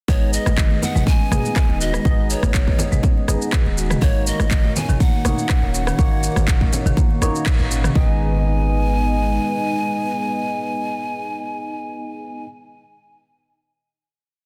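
Hypnotic and warm, this afro house piece rides a steady four-on-the-floor groove with a light swing in its sixteenths. A punchy electronic kick sits up front beside a tape-saturated house kit of handclaps, rim click, shaker and toms, with softly clipped snare hits and a band accent near the end of the groove. Close, dry congas ring in the background as interlocking parts, while a deep, boomy 808-style bass with a noisy edge pumps against the kick in a dotted rhythm. A woody marimba repeats a sixteen-step arpeggio through a digital delay, and a barky tine electric piano adds phased stabs of held chords with syncopated pushes. Above them, a breathy bamboo pan flute with vibrato and a soft chiff plays short call phrases, floating over a detuned, wave-folded analog pad that swells in slowly with chorus. After the drums and marimba fall away around 8.0 seconds and the bass drops out at 9.4 seconds, the flute, pad and electric piano hold a final chord until 12.4 seconds in a dry, dense, heavily limited mix.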